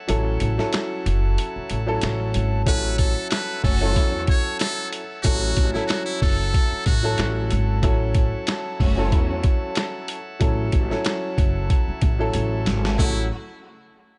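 A small room gives this soulful, confident boom-bap hip-hop excerpt a close, dusky sound with its top end rolled off. It moves at 93 BPM in A major with a lightly swung sixteenth feel. Up front, a gritty, pitched-down sampler-style drum kit pairs a thumpy kick with a medium-tuned snare and hi-hat beside a woody, growly pizzicato upright bass. A grand piano with long sustain and a cassette-tape tint plays accompaniment while a shouting, lightly overdriven tonewheel organ holds chords in the background through a stopped rotary speaker. After the opening break, at 2.7 seconds, a buzzy trumpet with a metal mute takes a forceful, jazz-style solo melody until 7.3 seconds, with scooped notes and light vibrato under analog delay, and a lush, softly bowed string section adds sul tasto stabs behind it. A drum fill at 12.3 seconds leads into a brief return of the trumpet.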